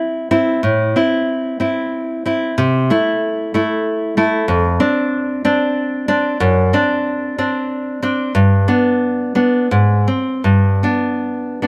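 Romantic solo classical guitar in a wistful, intimate 3/4 with rubato between 76 and 96 BPM, this excerpt features an up-front, fingerpicked nylon-string guitar with audible finger squeaks and a moderate plate reverb that adds a soft halo, moving from C and A minor through D minor and D7 toward G, with a brief, poignant turn to A-flat at 9.7 seconds before settling back on G.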